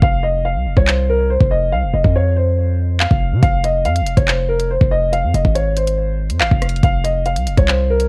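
A worn, warbling cassette-tape sound with a drifting pitch and little reverb frames this short cut from a longer drill track, giving it an ominous, cold atmosphere. In F minor at 141 BPM with a half-time feel in 4/4, it opens on a break that runs to 3.4 seconds, as the harmony moves from an F power chord to F minor and back. A dark, mellow grand piano carries the melody between Bb4 and F5, its boxy tone and long sustain shaded by a low-pass filter and a digital delay. Underneath, a hard-hitting 808-style bass sits up front, a punchy, heavy sine with a noise layer, fast attack and decaying notes spanning F1 to C3. The electronic drill kit is the loudest part, overdriven, with a knocking kick, bright hi-hats, handclaps and rim clicks driving the groove throughout.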